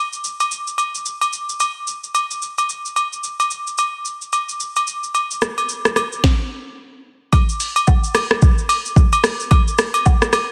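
A smooth R&B drum kit leads this relaxed amapiano cut from a longer piece, entering at 0.1 seconds with a soft kick, a sharp snare, warm hi-hats, rim clicks and shaker at 110 BPM in 4/4, swung at 58% on the sixteenths. The electronic, produced kit sits up front, roughened by overdrive and vintage 12-bit sampler grit and re-recorded in a small room, which gives it a gritty, lived-in character. At 0.4 seconds the agogo bells and woodblock join, joined by maracas and a group handclap, all acoustic, close and dry, sitting up front but lower in the mix than the drums. A drop arrives at 7.3 seconds and carries through to the end. Light reverb and a digital ambience surround the parts, and the dense, heavily limited modern master keeps the whole groove full and punchy.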